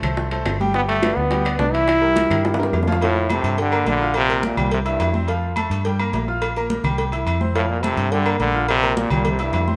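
Joyful and sunny, this fast salsa excerpt in F major moves at 212 BPM, with a bright concert grand piano comping over a dark, foam-muted fingered electric bass that sits round and punchy up front. Congas, bongos with cowbell, ringing saturated timbales with agogo bells and faint woody claves fill out the percussion, with a drum fill from 2.2 to 3.0 s leading into a looping F, Gm7, Bb5, C progression. A brilliant, smooth-topped trombone with light vibrato takes the solo melody from 0.8 to 5.1 s and again from 7.5 s, all set in a wet, large studio reverb.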